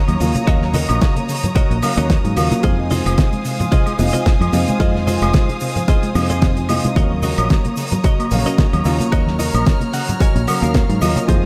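Swung on the 16ths at 111 BPM, this groovy, sleek nu-disco groove in Eb dorian rides an up-front, punchy electronic kick from 0.5 seconds and a damped, dark 70s drum kit with a fat snare, while a foam-muted fingered bass, background egg shaker and congas, and a soft round pluck arpeggio with tape echo sit beneath a worn, boxy grand piano, smooth bowed studio strings with light vibrato, and a compressed clean electric guitar riff with sampler grit that adds a fill at 9.7 seconds, all over Ebm7 and Fm7 chords in a dreamy, hall-soaked mix cut from a longer piece.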